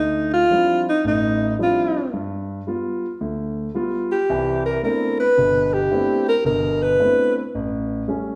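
An alto saxophone with jazz vibrato carries the melody from the first moment over a concert grand piano whose warm chords reach into deep bass, moving from Dm11 through G7 to Cmaj13 and A7 in this playful, swinging jazz fragment. Both instruments sit up front, yet a large studio reverb places the sound further back in the room. The saxophone falls away at 7.4 seconds, and the piano carries on alone until 8.4 seconds.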